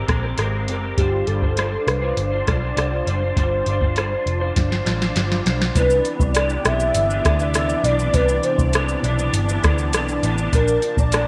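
A soft, overdriven vintage rhythm box with a deep kick, crisp snare, metallic hats, rim click and shaker sets a straight, laid-back 4/4 pulse beside a dark, round, foam-muted picked bass, while a slightly broken-up, lo-fi electric guitar through a small old amp, treated with chorus and vibrato, drifts under a velvety, detuned synth lead with portamento and slapback echo that enters at 1.0 seconds, and after a drum fill at 4.6 seconds a lush, thick unison pad swells in at 6.2 seconds to deepen the hazy indie and bedroom pop mood under light digital reverb.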